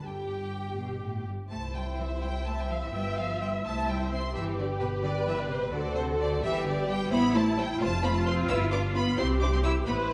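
Spirited and lively, this quick classical-period movement for string orchestra moves at 86 dotted-quarter beats per minute in a rubato 6/8, set in C major and cut from a longer piece. A clear, focused violin section carries the melody from B4 up to E6, while a second violin section with a soft attack and a lush, expressive tone supplies a supporting line beneath it, both sounding somewhat distant. Violas add a rich, vibrato-laden accompaniment, and a close, focused cello section joins an up-front double bass section, smooth and even with light vibrato, to anchor the bass down to F1. After a brief opening that settles onto G, the longer second section begins at 1.5 seconds and works through C, G7, D7, A minor and F before closing on C at 9.2 seconds. The whole ensemble sits in a moderate scoring-stage reverb with a 1.5-second decay, giving the strings a polished, spacious studio sound.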